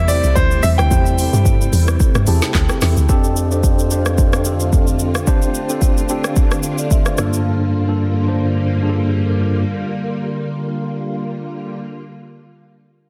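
This hypnotic, late-night amapiano fragment moves at 110 BPM in 4/4, with a 55% swing on the sixteenths, in G dorian. An electronic afro-pop kit sits up front from 0.1 seconds to 7.4 seconds, with a deep kick, a woody snare carrying soft clipping, smooth hi-hats, handclaps, rim clicks and shaker. Beneath it, a round, percussive log drum bass with a fast attack and a noise layer holds the low end until 3.1 seconds, when a dark bass clarinet takes over the bass in a solo, classical style until 5.2 seconds. A brilliant concert grand piano states a short melody through digital delay in the opening 2.5 seconds, while a mellow tine electric piano, clean and up front, accompanies and adds a fill before the shift from Am7 to F6, later settling on Gm7. A silky, vintage string machine with ensemble chorus and sidechain pumping sustains soft, warbling chords throughout. Light reverb and digital ambience surround a dense, heavily limited modern master.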